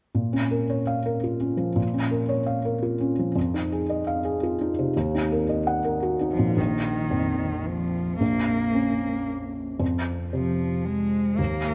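A felt-muted upright piano sits up front, soft and intimate, its audible action noise adding a close, mellow texture to this melancholic, reflective neoclassical piece for piano and strings. The tempo is around 113 BPM in 3/4 in Bb minor, but the feel is rubato, and the piano carries the accompaniment from the start, ranging from Bb1 up to Gb5 over chords moving from Bbm through Fm7 to Ebm. At 6.3 seconds a single bowed cello joins as a second line, warm and expressive, with vibrato, a soft attack and portamento, placed close and up front in a compact range from Eb3 to Bb3. Shortly after its entry, the second section opens at 6.6 seconds with a return to Bbm, which then settles on Fm. A moderate concert-hall reverb with a 2.4-second decay lends the pair a spacious, lingering air, and the recording is a short cut from a longer piece, ending at 11.7 seconds.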